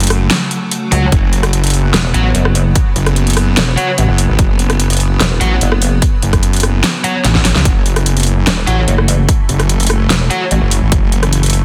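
Aggressive and heavy, this half-time wobble dubstep excerpt rests on a saw-edged, detuned wobble bass and a mellow, pulsing pluck wobble bass, both saturated and up front with chorus and overdrive, while an evolving, morphing wavetable pad sustains bright chords in the background with phaser, ensemble chorus and sidechain pumping. A dubstep kit with a huge soft-clipped snare, rim clicks and metallic hats drives the groove, joined at 1.1 seconds by a punchy, layered electronic kick, with a drum fill at 7.2 seconds. Thick, double-tracked fuzz guitar stabs arrive at 0.9 seconds, dripping with dub echo, all inside light digital ambience and a dense, heavily limited master.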